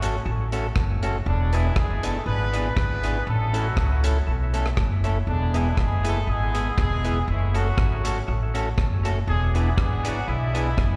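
Heard live through a venue's PA in a recital-hall reverb, this cheerful, upbeat ska excerpt at 120 BPM in E mixolydian puts a dry, dark reggae drum kit with a tight kick and a woody pizzicato upright bass up front, while a slightly broken-up picked electric guitar sits in the background, a fat, lightly overdriven tonewheel organ with key click and a stopped rotary speaker plays percussive stabs through dub and slapback echo, and a distant, roomy horn section carries the melody in octaves with light vibrato.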